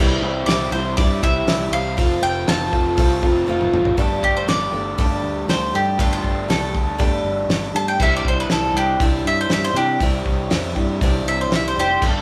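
Hopeful and jangly, this 120 BPM folk rock and heartland rock excerpt in straight 4/4 sets a woody, boxy old ladder-braced acoustic guitar and a lo-fi, double-tracked overdriven garage guitar over a punchy fingered electric bass, with a damped 70s drum kit up front, its fat snare, tight kick and dark cymbals joining at 0.5 seconds. A bright, up-front bowl-back mandolin also enters at 0.5 seconds with the melody, and a drum fill at 3.5 seconds leads into its solo from 4.0 seconds, as the chords move from C and F to Gsus2 and Cadd9. The band sounds like it is playing live in one room, with moderate large studio reverb around it.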